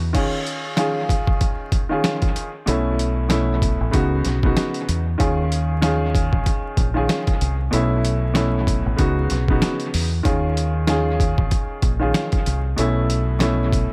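A swung boom-bap hip-hop groove at 95 BPM in 4/4 and Eb minor sets a gritty, moody tone, with a thumpy, overdriven, pitched-down sampler-style kit of kick, snare, hi-hat and crash sitting up front beside a dark, round, punchy fingered electric bass. A smooth, vintage grand piano with short sustain, filtered and trailed by dub echo, moves through Eb9sus4, B9sus4 and Db9sus4 chords. Vinyl crackle and an echo-heavy digital ambience surround this short cut from a longer piece.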